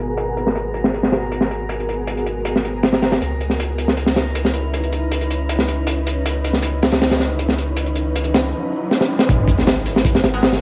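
Dark and atmospheric, this drum and bass excerpt with a jungle edge opens on a blurred, detuned granular pad carrying sustained G#m9 and C#m9 chords with 12-bit sampler grit, over a round, deep dub sub bass and a faint glassy texture of drifting overtones high in the background. A crunchy, saturated breakbeat kit with a punchy kick and high-tuned snare sits up front from 0.2 seconds, while a background riser builds from 7.7 seconds and a drum fill leads into the drop at 9.3 seconds. There a very quiet, overdriven soul-sampler kit with tambourine joins, a nasal band-passed chord stab with phaser flickers briefly, and the whole mix carries small-room ambience, cassette character and vinyl crackle under a low-pass filter.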